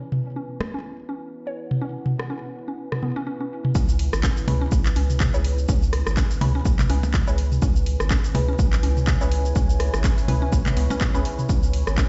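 Minimal techno at 124 BPM in C# minor, quirky and sparse, swung on the sixteenths and resting on a C#m7 chord in this short cut from a longer piece. A deep, moody ambient pad with a slow attack and chorus sits under an overdriven click kit of percussion blips, rim clicks and toms fed through digital delay, while a woody, mallet-like FM pluck plays a riff with dub echo and sidechain pumping. At 3.8 seconds the drop arrives: a punchy, tape-warm electronic kick, a round, nasal analog bass and a house kit of cabasa, handclaps and hi-hats all enter together. From 4.5 to 11.2 seconds a muted, detuned chord stab adds phaser, lush chorus, cassette-tape colour and delay. The mix carries light stone-room reverb, as if played on a big sound system in a bare room, with the top end rolled off above 7.8 kHz.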